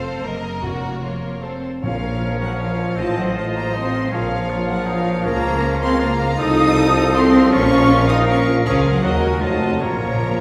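The recording sounds set back in a reverberant scoring stage, heard from further back in the room, as a full symphony orchestra plays a stormy, restless passage from a fast romantic classical movement in 3/4 with a rubato feel. The strings carry it from the first moment: a distant, smooth symphonic violin section holds the melody in the background, an expressive chamber violin section adds a second line reaching high, and violas supply even accompaniment while the focused cellos and a chamber double bass section anchor the bass. Timpani struck with hard mallets on calf heads sound close and dry, entering at 0.6 seconds and returning for a fill at 9.8 seconds. At 1.8 seconds the winds and brass join: a pure flute section, a clear solo oboe and a bright clarinet weave second lines, a bassoon adds accompaniment, a tuba deepens the bass, and very quiet French horns and trombones hold sustained chords. 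The harmony moves restlessly through minor chords and dark dominants, tightening into a tense F7b9 before landing back on Bb minor as the fragment breaks off.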